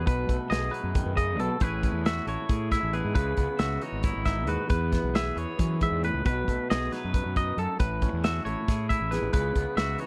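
Two clean, twangy electric guitars open this wistful, playful math rock and midwest emo excerpt in 7/8: one bright, scooped and picked, bathed in spring reverb as it plays accompaniment, the other fingered and higher, spinning arpeggios, both over a fuzz-drenched, overdriven fingered bass that sounds round and punchy. A loose acoustic indie kit of kick, snare and hi-hat joins at 0.1 s, its tight kick and medium-tuned snare carrying a rolled-off top, as the harmony cycles through B7, Amaj9, C#m9 and E6. The recording is dry and close, with a 1970s studio character, and the drums, bass and bright guitar sit up front.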